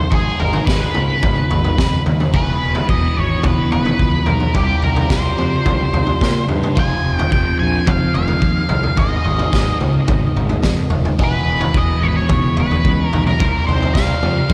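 This mysterious, trippy psychedelic rock passage, cut from a longer piece, opens with a dark octave-fuzz lead guitar singing a melody through wah, distortion and analog delay. Beneath it from the first moment, a bright, double-tracked crunchy guitar riff with phaser plays while a fuzzy, overdriven picked bass sits in the background, and a raw garage drum kit arrives at 0.1 seconds. The drums are up front and gritty, with a punchy kick, high-tuned snare and toms, driving a straight 108 BPM in 4/4 through a cycle of Abm, E, Csus4 and Fm in a small room with light reverb.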